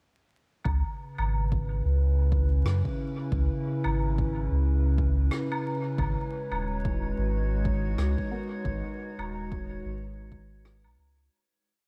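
A deep, round sub bass sits up front in this meditative, spacious ambient dub piece, playing a mellow dub-style line from 0.7 seconds at 90 BPM in C# minor with a 16th-note swing. Beneath it, a soft electronic kick and a sparse woodblock and rim click, gritty and saturated with a rolled-off top and a dub echo, mark out the slow groove. A warbling, nostalgic tape-like pad, detuned and dark with chorus and its own reverb, holds slowly shifting chords that move from C#m7 to G#m7 at 6.0 seconds. A glassy, drifting texture of high overtones joins at 6.3 seconds, calm and held on a single note under chorus and reverb. Near the end, a brief muted chord stab with a phaser and dub echo flickers in the background, while vinyl crackle and light small-room ambience surround the piece as it fades out from 7.8 seconds.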